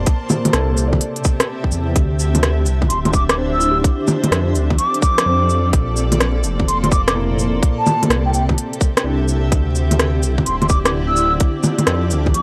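Future garage at 127 BPM in A phrygian, this ghostly, melancholic excerpt moves with a swung 16th-note feel over a cycle of Am7/C, D9sus4, F6 and Bbmaj7. A tight, overdriven electronic kick sits up front beside an organic electronic kit of bongos, cabasa, crisp hi-hat and rim click, both re-recorded in a small room, while a dark, detuned saw bass rumbles and beats underneath with tube saturation and sidechain pumping. A granular cloud pad holds blurred, evolving chords through its own reverb and 12-bit sampler grit, and a felt-muted upright piano, boxy and intimate with audible action noise, murmurs in the background through analog delay until 9.7 seconds. At 2.9 seconds a reedy baroque flute enters with a pure, woody, vibrato-laden melody, its tongued notes echoed by analog delay. The overall sound is dry and gritty, with vinyl crackle lending a hardware-worn patina.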